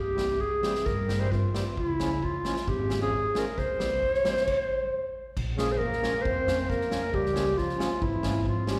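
A soft-attacked clarinet sits up front, playing the soulful, festive klezmer melody in a classical style over a straight 4/4 at 134 BPM in C phrygian dominant; the tempo speeds up throughout, with a stop between 4.5 and 5.4 seconds. A reedy, smooth accordion supports it, and both carry plate reverb and slapback echo. Beneath them, a woody, thumpy pizzicato upright bass on gut strings joins an airy, polished street-band drum kit with a boomy kick, medium-tuned snare and dark cymbals, and a warm trombone second line enters at 5.6 seconds with the same plate reverb and echo, all heard as a live gig through the venue's PA in moderate club reverb.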